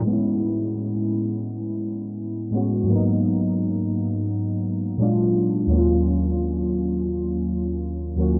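The rhythm sits at 85 BPM in 4/4, with a gentle 55% swing on the sixteenths that gives this hip hop fragment a loose, unhurried lean. A single part carries the music: warbly lo-fi synth keys, detuned and nostalgic, blending triangle and sawtooth tones with a fast attack that decays into a mellow glow. Chorus and a cassette tape character color the keys, which sit up front in the mix. The harmony moves from Amaj7 to G#m7 at 2.9 seconds, then through A#7b13 to D#m9, giving the passage a melancholic, hazy mood. A filter sweep runs across the whole section in a dreamy mix soaked in long cathedral reverb, dusted with vinyl crackle and softened by a low-pass filter, and the clip is cut from a longer piece.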